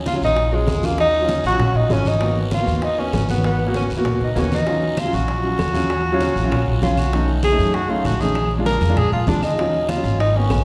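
Afro-Cuban jazz in Eb minor at a driving 195 BPM, this sultry excerpt puts a tenor saxophone up front, its tone carrying light vibrato and scooped notes in a roomy, distant jazz-style solo over an intimate grand piano with audible action noise and a thumpy, dark pizzicato upright bass on gut strings. Thick-skinned congas sit compressed and saturated in the background, joined by very quiet, low-tuned bongos struck with hard hands, a raspy guiro, and woody, band-limited claves that enter at 5.0 seconds. The chords move from Ebm7 through Abm7 and B7 to Bb7 before returning home, all bathed in the lush reverb of a recital hall.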